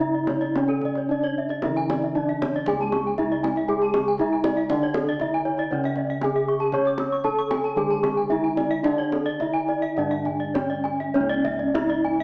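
In a straight 4/4 pulse, this hypnotic, shimmering Balinese gamelan fragment places an up-front bronze metallophone melody, struck with a wooden mallet and beating from its paired tuning, over a lower metallophone accompaniment in the background that drops out at 11.1 s, while two ringing metallophones spin arpeggios above, one played with a horn mallet for a bright, airy edge; round, beating bossed gongs carry the bass, and tight, vintage-toned kendang drumming adds percussion, all heard in a moderate recital-hall reverb through a small-speaker sound.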